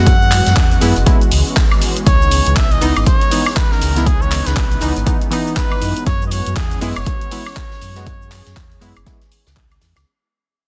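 Warm and late-night in mood, this deep house excerpt moves at 120 BPM in 4/4 with a 60% swing on the sixteenths, sitting on a drop that begins fading out from 2.1 seconds. A cup-muted trumpet carries the solo melody in a soft, veiled pop style with light vibrato and tape echo, over round sawtooth keys playing decaying stabs through chorus, a filter sweep, tape echo and sidechain pumping. A smooth, detuned sawtooth pad holds sustained chords with chorus and pumping, while a deep, full sine sub bass with an added octave anchors the low end through the same pumping. The percussion pairs a punchy, up-front electronic kick with a layered, produced kit of handclaps, hi-hat, shaker and woodblock in studio reverb, plus a very quiet acoustic kit of hi-hat and medium-tuned snare from a small room. The harmony moves from F#9sus4 to C#m9 at 2.1 seconds and back to F#9sus4 at 6.1 seconds, all within a dense, heavily limited modern master.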